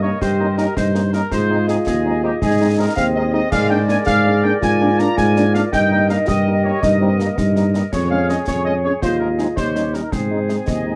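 A straight 6/8 pulse at 109 BPM drives this proud, rousing military-style march for wind band in Ab major, where a dark, tight trumpet section carries the melody over a mellow woodwind section and a punchy euphonium on the second line, a clear French horn section in the background, an up-front tuba with a smooth top anchoring the bass, and close, dry concert snare, bass drum and dark-toned clash cymbals, all captured with close, detailed microphones and little reverb in this short cut from a longer piece.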